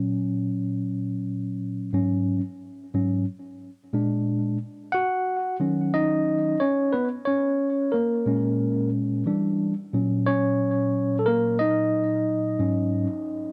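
A mellow, smoky hip hop excerpt at 90 BPM in Eb minor, heard from its opening second as a solo tine electric piano, warm, clean and up front through its built-in speakers, with a swung 16th-note feel and tape echo, ranging from Ab2 to Gb5 as it moves through chords such as Ab7sus4, Bb7 and Ebm7 in a moderate studio ambience until 13.5 seconds.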